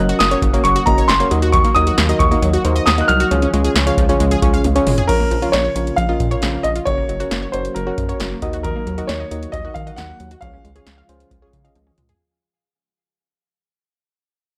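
Melancholic, driving synth-pop cut from a longer piece, with a clear, polished concert grand piano carrying the melody over a mellow FM electric piano, a swirling phased analog pad kept very quiet beneath, and bright, detuned unison pluck arpeggios trailed by tape echo. A round, dark analog bass and an up-front electro drum machine with a deep kick, punchy snare and metallic hats push the chords from Gb through Ebm and Db to Bbm, with drum fills at 4.6 and 11.8 seconds. The recording sounds dry and gritty with transformer saturation, and a fade-out runs from 5.1 seconds to the end.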